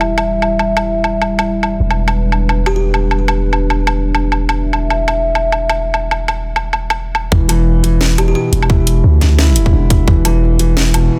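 This excerpt opens on a dark analog pad of nasal, detuned chords in E minor with chorus and sidechain pumping, over a deep, sine-like 808-style bass and an overdriven drum kit of cracking snare, bright hats and woodblock, setting a cinematic, tense half-time drum and bass groove at 174 BPM with a swung feel. A woody kalimba flickers briefly through delay in the background at 2.7 seconds. At 7.3 seconds the pad stops and the drop arrives on an E5 chord, bringing in a tight, overdriven electronic kick and soft, felt-muted upright piano arpeggios trailed by delay, all within a dense, heavily limited master with light reverb.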